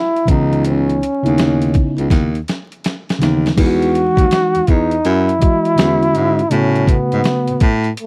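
A warm trombone with vibrato opens this nocturnal, mellow jazz-hop piece at 82 BPM, playing a scooped, jazz-style lead up front over a swung 16th-note feel, joined almost at once by a gritty, compressed, pitched-down boom bap drum kit with a thumpy kick, medium-tuned snare, hi-hat and crash that plays a fill from 2.1 to 3.6 seconds. A clean tine electric piano heard through its built-in speakers carries the harmony from C#m9 to Emaj9, E13 and A69, while a breathy baritone saxophone takes the bass line in an intimate, whispered subtone with light vibrato and a soft attack. The recording has the dry, close feel of a 1970s studio, with vinyl crackle and digital ambience.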